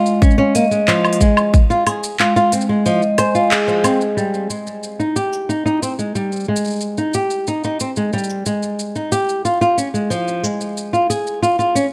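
A straight 4/4 pulse at 91 BPM drives this hopeful folktronica excerpt in Ab major, where a tight, up-front electronic kick thumps only from 0.2 to 1.7 s beneath produced handclaps, smooth hi-hats, shaker and woodblock, while an up-front fingerpicked flamenco guitar spins filtered, delayed arpeggios with audible finger squeak, a ringing, metallic motor-off vibraphone adds a delayed second line until 4.2 s, and a brief band accent lands amid light small-room reverb and vinyl crackle.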